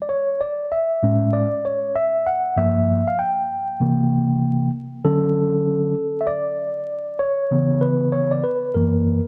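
Under a bed of vinyl crackle and a moderate plate reverb, this nocturnal, smoky hip hop excerpt features a mellow, clean tine electric piano, up front and heard through its built-in speakers, playing alone for the full 9.3 seconds with a swung sixteenth-note feel, moving through lush chords from Amaj7 and Gm7 to Dmaj7, C#m7 and F#7.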